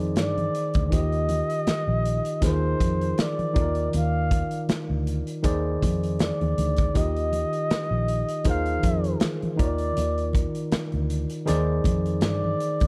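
Lush and smooth, this short cut of 1970s-style soul moves at an unhurried pace with a gentle sixteenth-note swing. A clean tine electric piano, heard up front through a combo amp, lays down rich chords such as Fm13, Ab69 over Eb and Bbadd11, while a vintage fingered electric bass sits underneath with a dark, round, foam-muted tone that is amped and punchy. A modern studio drum kit plays hi-hat, punchy kick and a medium-tuned snare, placed up front in a pumping room sound. From 0.2 seconds a breathy flugelhorn carries the solo melody in an intimate, pop-style voice, whispered and warm, with soft attacks, scooped notes and vibrato. Very quiet congas with thick, damped skins and soft hands add close acoustic color, and a small room reverb gives the whole a snug sense of space.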